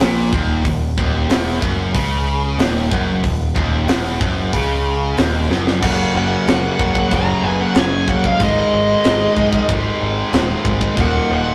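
A straight, driving 4/4 pulse from a tight, up-front acoustic kit with a high-tuned snare, tight kick, hi-hat and crashes anchors this aggressive, epic heavy metal excerpt. Two bright, picked distorted rhythm guitars (one heavier, one tucked into the background) churn out the riff over a growling, overdriven electric bass, all moving through Ebm, Gb and Ab5 in a rough rehearsal-room recording with tube saturation and a moderate stone-room reverb. After a drum fill, at 5.8 seconds a bright high-gain lead guitar enters with a high melody, shadowed by a very quiet, warm second lead line lower down.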